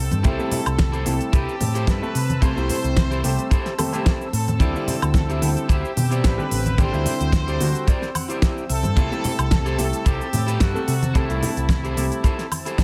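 A distant, roomy trumpet section carries the melody with light vibrato and dub echo over a lush, detuned sawtooth pad that pumps with the beat in the background, opening this sunny, groovy nu-disco excerpt at 110 BPM with a gentle swing. A dry, up-front kick and a layered pop kit with fat snare, crisp hats, shaker and woodblock drive the groove alongside soft-handed, low-tuned congas, a round picked electric bass and a present baby grand piano comping through C6 and D9sus4 chords. A twangy electric guitar at the edge of break-up plays a riff with analog chorus and vintage 12-bit grit, and a clean electric guitar fill slips in at 7.9 seconds.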